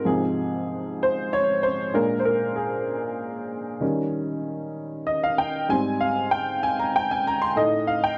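Gospel in a slow, straight 6/8 at 64 BPM, this short excerpt in Ab major feels reverent and jubilant at once. A lone upright piano carries everything from 0.0 to 8.2 seconds, ranging from Ab2 up to C6. Its tone is woody and worn, slightly detuned yet clear, with long sustain and a slapback echo trailing each phrase. The harmony moves through Ab6, Bb7, Eb7 and Abmaj7 before landing on F9/A near 7.6 seconds. The sound is dry and close in the manner of a 1970s studio, with the piano up front and a small room ambience around it.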